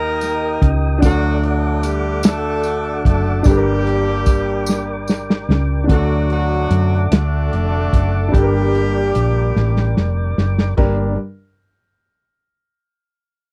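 Slow gospel in G minor at 49 BPM in a fervent, soulful 6/8, where a tight, jazz-style horn section carries the melody with light vibrato, octave doubling and slapback echo over a woody upright piano, a lightly overdriven tonewheel organ with key click and slow rotary speaker, a dark, round, punchy hollow-body electric bass and a muffled, up-front soul drum kit with drum fills at 4.7 and 9.6 seconds, while a jingly tambourine plays only until 5.5 seconds, all in a dry, close 1970s-style studio sound cut from a longer piece.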